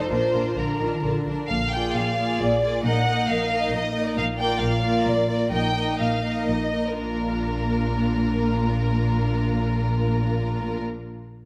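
Lively and graceful, this short cut from a quick classical-period movement for string orchestra moves in 3/4 at 114-138 BPM in Bb major with a rubato feel, easing into a slowdown between 3.5 and 7.0 seconds. A warm, up-front violin section carries the melody over a second violin line, while a focused viola section fills the accompaniment and a dark, expressive cello section sits in the background beside a double bass section anchored on low Bb. All the bowed sections sing with vibrato, and a moderate recital-hall reverb gives the lush ensemble a graceful sense of space as the harmony moves from Bb through Bb7, Ebm/Bb and Eb/Bb before settling back on Bb.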